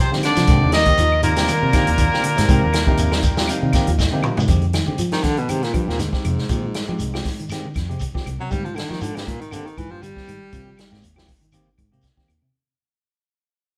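Heard as a band playing live in a stone room with moderate reverb and a faint mains hum, this hypnotic, driving afrobeat cut opens with a bright, roomy trumpet on the melody over a clear alto saxophone and a raspy, gritty baritone saxophone. A barky, lightly overdriven tine electric piano adds a fill before it drops out at 4.4 seconds, and a drum fill leads into a solo from a second baritone saxophone with a smooth top starting at 5.1 seconds as the piece fades out. Underneath, a punchy vintage drum kit sits up front beside a dark, round fingered bass, while a slightly broken-up guitar plays arpeggios, a clean semi-hollow guitar plays stabs, and woody claves and grainy shekere sit in the background.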